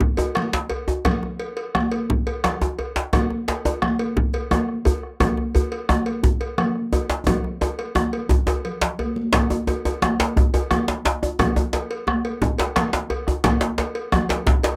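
A straight 12/8 groove at 116 BPM drives this festive, powerful West African drum ensemble excerpt, heard through light reverb. A round, vintage, band-limited bombo plays throughout. A medium-tuned djembe with metal rattles and soft hands sits up front, while a second, tight, cracking djembe stays close and dry in the background; high-tuned, thin-skinned congas struck with hard hands sound bright and distant in a large room, and a metallic cowbell rings in a live room, until a drum fill from 7.3 to 9.3 seconds carries the ensemble into a new section.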